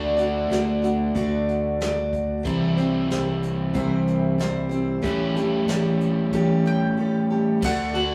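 Folk rock with a heartland rock lean at 93 BPM in a straight 4/4, this nostalgic, warm excerpt cycles through D, C and A7 as a brilliant, up-front picked steel-string acoustic guitar and a crunchy, double-tracked overdriven electric riff ride over a fingered electric bass and a brushed drum kit with dark cymbals. A round, double-strung mandolin melody enters high at 6.7 seconds, and at 7.6 seconds a concert grand piano with audible action noise appears in the background as the chords return to D. The sound is rough and rehearsal-room-like, with tube saturation, small room ambience and a short wet reverb.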